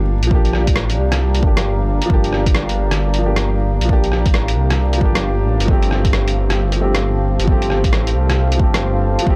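Wistful and melancholic, this short future garage excerpt moves at 134 BPM in G minor with a swung 16th-note feel, shifting from Gm7 to Fadd9/G at 5.7 seconds. A woody upright piano with audible action noise and a slightly detuned character plays accompaniment in the middle register, treated with tape echo and sidechain pumping. Above it, a deep, moody ambient pad holds sustained chords with a slow attack and long release, colored by chorus, its own reverb and a moving notch. Underneath, a menacing detuned saw bass sits up front, evolving through a filter swell with a saturated edge and sidechain pumping, alongside an overdriven, layered electronic kick. A muffled, compressed sampler-style kit adds hi-hat and rim click from 0.2 seconds, re-recorded in a small room. The overall sound is dry and gritty, with transformer saturation and vinyl crackle lending a worn, hardware texture.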